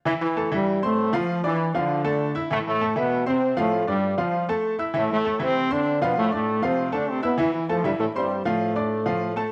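A punchy, tight trombone section carries the melody with light vibrato over a woody, intimate upright piano whose action noise is audible, in this fiery, passionate Latin passage at 197 BPM in A minor that moves between Am and Dm, cut from a longer piece and set in a dark production with a large studio reverb.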